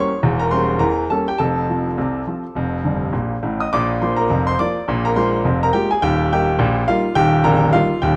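A lightly swung sixteenth-note lilt in 2/4 drives this short, lively ragtime piano excerpt, giving it a jaunty strut from the first beat. A solo grand piano carries the whole 8.2 seconds, ranging from a deep Bb0 in the bass up to Eb6. Its tone is clear and intimate, sitting up front with a short sustain and the audible clatter of the piano's action adding a natural, close-up feel. A piano fill between 2.8 and 3.7 seconds bridges into the next phrase as the harmony moves from Edim7 and F to Bb, then Bb7 and Eb. A moderate spring reverb and a dark production colour the sound.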